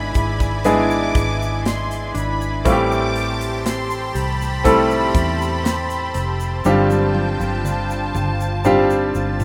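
A clear, up-front baby grand piano and a symphonic violin section open this melancholic, longing pop ballad together, the violins singing a high second line with vibrato and a smooth top. Beneath the violins, a thick sawtooth pad with a slow attack and chorus sustains detuned chords, while a clean, compressed electric guitar, recorded direct, picks arpeggios through a digital delay in the background. A dark, foam-muted electric bass with a round, punchy tone sits up front, and a modern studio drum kit with a tight kick and a medium-tuned snare comes in at 0.1 seconds, followed by a grainy tube shaker at 0.2 seconds. The harmony moves from E7/G# to Am7, then settles on G7sus4 as the drums play a fill from 6.7 seconds to the close. The rough home demo mix carries a small room ambience, and the passage is cut from a longer piece.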